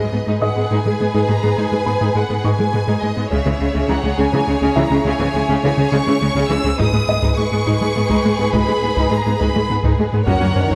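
In a straight 6/8 at 69 BPM counted in dotted quarters, this futuristic, relentless hybrid orchestral and electronic film cue in G# minor opens with lush bowed violins carrying a vibrato-rich melody over a second violin line, focused violas, cellos on the bass and a dark, gliding sawtooth synth bass riff with portamento, while a worn baby grand piano with delay adds background texture from 0.4 seconds. Heavy-stick taiko drums enter at 3.3 seconds, as the harmony moves from G#m to C#m and back. An electronic riser surfaces at 10.5 seconds, all set in a moderate scoring-stage reverb in this short cut from a longer piece.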